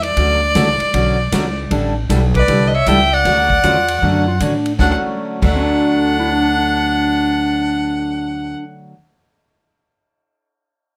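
Country western swing in D major at 156 BPM with a cheerful, down-home lilt, this short excerpt features a clear, earthy bowed fiddle carrying the melody up front over a woody, thumpy pizzicato upright bass, a full-bodied jumbo acoustic guitar with audible finger squeak, and a punchy big-room drum kit with dark cymbals that drops out at 5.5 seconds, while a jazzy clarinet with light vibrato and scooped notes joins at 2.4 seconds and a bright, compressed pedal steel with slide and volume swells adds a second line from 3.6 seconds, all under light reverb.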